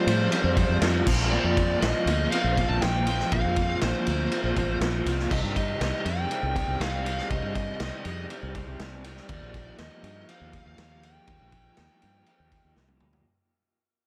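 A fuzzy, picked lead guitar sings its melody through analog delay over a bright, twangy, slightly broken-up rhythm guitar riff with tremolo and its own delay, joined at 0.1 seconds by a round, foam-muted fingered bass and a gritty, saturated vintage drum kit with dark cymbals and a tight kick, in a dark, trippy psychedelic rock passage at 121 BPM in 4/4 that moves from Fsus2 through Bbsus2 and Cm to Ebadd9 in an echo-heavy mix, fading out throughout before a drum fill at 12.8 seconds.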